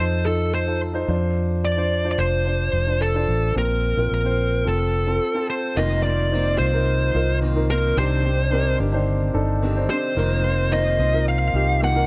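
Pop at 109 BPM in a straight 4/4, hopeful and anthemic, cut from a longer piece: a dark, compressed fuzz lead guitar carries the melody up front over a concert grand piano with deep bass and a round, punchy, foam-muted electric bass, all playing through the full 12.1 seconds. After a brief break at 5.2 seconds, a fingerpicked steel-string acoustic guitar enters at 5.8 seconds with a riff, low in the mix, as the harmony moves from F7 through Dm7/F and Bbsus2 to F7sus4 and Cmadd9. The sound sits in light studio reverb.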